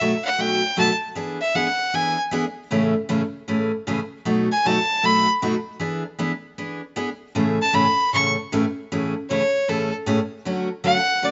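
Swinging and down-home, this short country excerpt moves at 155 BPM in 4/4 with a swung eighth-note feel in A major. A single clear fiddle carries the melody from the start, taking a solo across the whole clip with a biting, earthy tone, light vibrato and an airy bow sound, placed close and up front. Beneath it, a picked steel-string dreadnought acoustic guitar provides the accompaniment, bright and also up front, with audible finger squeak. The harmony cycles through B7, E7 and Amaj7, returning to the opening idea at 8.9 seconds and moving to Dmaj7 at 10.5 seconds. A moderate echo chamber reverb gives the pair a roomy ambience, while the top end stops above 7.8 kHz, and the piece is cut from a longer performance, ending at 11.3 seconds.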